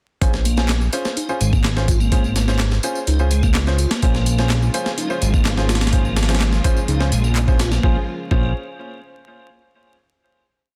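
An energetic, gritty breakbeat track in Bb minor at 126 BPM opens at 0.2 s on a Bbm7 drop. A compressed, up-front sampled break with a thumpy kick plays under an overdriven electronic layer of tambourine and handclaps, and a fat, detuned sawtooth bass holds long gliding notes with a filter sweep, while a delayed grand piano stabs dotted-rhythm chords in one shape moved in parallel. From 0.5 s a piping, lightly overdriven tonewheel organ repeats a 16-step sequence through a fast rotary speaker with key click, lush bowed strings join distantly in the background at 4.0 s with sidechain pumping, and a final chord rings from 7.8 s over a dense, heavily limited master dusted with vinyl crackle.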